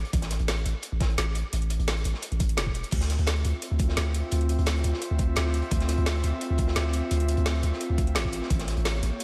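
Liquid drum and bass at 172 BPM in D minor, dreamy and rolling, cut from a longer piece and soaked in lush hall reverb with some lossy compression artefacts. A deep, mellow 808-style bass sits up front beneath an overdriven, knocking electronic kick and a layered garage kit with woody snare, metallic hats and crash, while a gritty, dark breakbeat kit with a rolled-off top rides in the background. From 3.2 seconds an airy, breathy pad with chorus and a slow attack brings in sustained chords, moving from Dm9 to A7b9 at 8.5 seconds.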